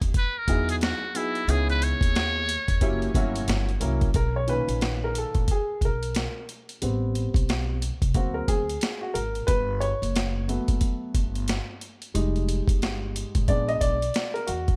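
A cool, relaxed jazz-hop groove opens at 90 BPM in B major, with gritty, pitched-down boom bap drums and a woody, gut-strung pizzicato upright bass setting a 4/4 pulse that swings its sixteenths. The up-front, compressed kit pairs a thumpy kick with a high-tuned snare and hi-hat, and it carries the air of a large room. At 0.2 seconds a buzzy, thin trumpet with a metal mute takes a short jazz-style solo, with vibrato, soft attacks and scooped notes trailed by tape echo, and it finishes by 3.5 seconds. A dark, mellow upright piano enters at 0.5 seconds to comp under the horn, then steps forward for its own smooth, vintage-toned solo from 4.2 seconds. Rich extended harmony such as Emaj9, F#7b9, Daug7 and Fm9 colours this fragment of a longer piece, all set in a small room ambience.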